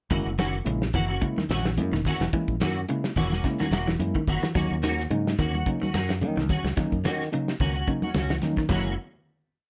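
Afrobeat groove, driving and funky, with a damped 70s drum kit up front laying down a dry, tight afro kit pattern while hard-handed congas sit in the background. A round fingered electric bass carries a syncopated riff beneath a reedy electric piano with fast tremolo playing rootless chord stabs. One clean picked guitar repeats an arpeggiated ostinato in the background, and a darker one, touched with ensemble chorus, strums upper chord shapes as the piece moves between F#7 and D#m7 in light reverb until a final hit at 9.0 seconds.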